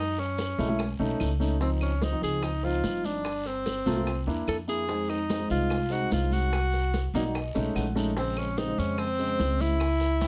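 A driving, straight 4/4 groove at 146 BPM carries this sultry Afro-Cuban jazz excerpt in Bb minor, where a clear tenor saxophone with vibrato plays the solo melody up front over a woody pizzicato upright bass with thumpy gut strings and a dark, smooth grand piano that adds a fill from 6.9 to 8.2 seconds, while damped, high-tuned congas, tight bongos, compressed claves, a raspy guiro and grainy maracas sit in the background of a close, dry, detailed recording.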